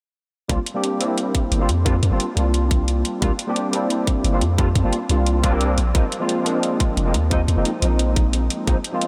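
Uplifting and dreamy, this excerpt of liquid drum and bass moves at 176 BPM in a straight 4/4, with a bright, barky tine electric piano playing accompaniment through overdrive, ensemble chorus, a low-pass filter and tape echo, shifting from C9sus4 to Bb9sus4 at 5.8 seconds. Beneath it, a deep, sine-like 808-style bass holds long, mellow notes up front, while a tight electronic kick and metallic hi-hats, both layered and re-recorded in a small room, drive the groove. A huge ambient reverb soaks the whole mix in a hazy, floating space.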